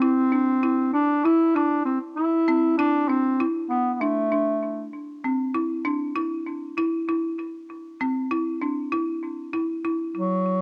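A bass clarinet and a folk marimba open together on a rootless Cadd9 in this driving, brooding progressive instrumental, cut from a longer piece and set in 9/8 at 196 BPM counted in eighths. The bass clarinet carries a classical-style melody with a roomy, distant tone and drops out at 4.9 seconds, returning briefly at 10.2 seconds. The hard-mallet marimba plays woody, bright arpeggios through analog delay until 10.2 seconds, all in a small room on a home cassette recording with a tape character.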